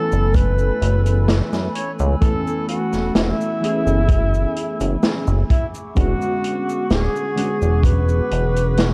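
A dark, warm production with a small-room sheen and light reverb frames this woozy, melancholic vaporwave excerpt in F# minor, moving at a slow 64 BPM in a straight 4/4. An alto saxophone carries the melody, sounding distant and roomy with classical-style vibrato and a trail of tape echo. Warbly, detuned lo-fi synth keys supply nostalgic, mellow accompaniment through ensemble chorus and tape echo, while a wave-folded, tape-like pad holds slow-blooming chords in the background. A glossy, nasal chorused synth bass sits up front with a plucky, pulse-width-modulated tone, joined by a big-band-style acoustic kit of cabasa, hi-hat and medium-tuned snare, plus a punchy kick from 0.3 s, all drums roughened by vintage 12-bit sampler grit. The harmony rests on F#m11 before shifting to E13 at 5.5 s.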